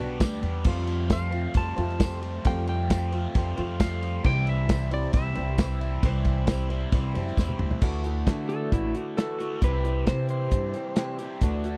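A dry, close 1970s-style studio sound with little reverb frames this short excerpt of folk rock and heartland rock, moving at 134 BPM in a straight 4/4 with an open-road, hopeful mood. The damped 70s drum kit sits up front with a tight kick, a medium-tuned snare and a rolled-off top, while a woody, growly upright bass, plucked on steel strings, anchors the low end beside it. An old ladder-braced acoustic guitar picks a boxy accompaniment, and a double-tracked overdriven electric guitar plays a riff coloured by phaser, with a jingly, saturated tambourine tucked in the background until 7.5 seconds. From 1.1 seconds a dark, compressed lap steel guitar carries the melody with a clean slide tone and volume swells. The chords move from Gmaj7 through Fadd9 to C, and after a drum fill at 7.4 seconds the harmony shifts to Dadd9 and back to C as an electric slide guitar solo begins at 7.8 seconds.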